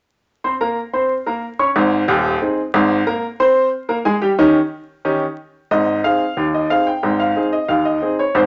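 Ragtime piano in Ab major at 91 BPM in a straight 2/4, this jaunty, cheerful excerpt features a solo upright piano, brilliant and woody and placed up front, ranging from Eb1 to Db6 between 0.4 and 8.5 seconds, moving from Ab to Eb7 and back to Ab as a new section begins at 5.7 seconds, set in moderate studio reverb under a layer of vinyl crackle, with nothing heard above 7.7 kHz.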